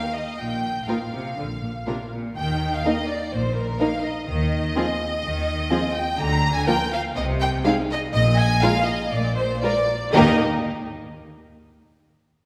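Cheerful and lively, this quick classical-period string orchestra excerpt opens with a clear, intense violin section carrying the melody up front, joined at 0.4 seconds by a focused cello section and a dark, expressive chamber double bass section on the bass line. At 0.9 seconds a smooth, even second violin section adds a warm second line while a rich viola section fills in the accompaniment, all bowed with vibrato. A wet scoring-stage reverb places the ensemble further back in the room.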